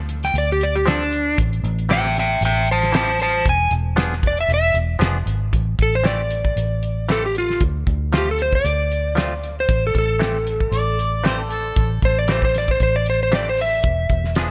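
Smoky and soulful, this straight-eighth soul blues in A minor moves at 116 BPM in 4/4 with a faint sixteenth-note swing, and it is cut from a longer piece. A vintage, foam-muted fingered electric bass sits up front with a dark, round, amped tone, while a cloth-damped acoustic kit in a small room gives a fat snare, tight kick and hi-hat with a rolled-off top. The electric slide guitar carries the melody from the outset, dark and slightly broken-up, played with fingerpicks and featured as a solo through the first 5.5 seconds. A bright, twangy clean electric guitar, recorded direct and compressed, adds picked stabs over chords that move from Am7 and E7b9 through Dm7 back to Am7. At 10.7 seconds a distant, roomy harmonica slips in for a brief jazz-style second line with light vibrato and scooped notes, colored by overdrive and tape echo. Light reverb ties the parts together.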